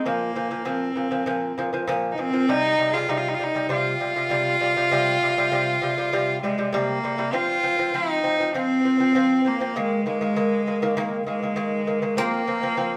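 A bowed cello and a fingerpicked acoustic lute open this solemn, windswept Mongolian folk piece together, in a steady four-beat pulse. The single cello carries the melody up front with a biting, nasal, earthy tone and light vibrato. Beneath it, the lute plays delicate arpeggios on doubled gut strings, some of them in octaves, sitting close to the listener. The music moves into a second section at 7.3 seconds. At 12.2 seconds a guzheng played with fingerpicks adds a quiet second line with a silvery, ringing sound. The players sound live together in a large studio with a generous reverb, and the recording is an excerpt from a longer piece.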